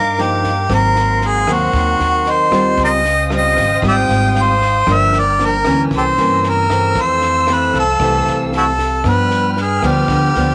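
A jazz-style harmonica leads this smooth, wistful bossa nova cut from a longer piece, sitting up front with vibrato, scooped notes and tongue slaps at 115 BPM in straight 4/4. Beneath it, a fingerpicked nylon-string guitar with fresh strings adds a classical touch, finger squeaks audible, while a woody pizzicato upright bass anchors the low end. A distant, lush violin section holds sustained chords in the background with soft-attack bowing, portamento and expressive vibrato. A metallic, ringing vibraphone with medium motor vibrato chimes in the background until 4.9 seconds, and a dry compact cocktail kit with a punchy kick, rim click and high-tuned snare sits low in the mix. The harmony moves from a rootless Cm11 through Ab9 and Dbmaj9#11 to Gm7, C7b9, Fmaj7 and G7, all wrapped in light reverb and small room ambience.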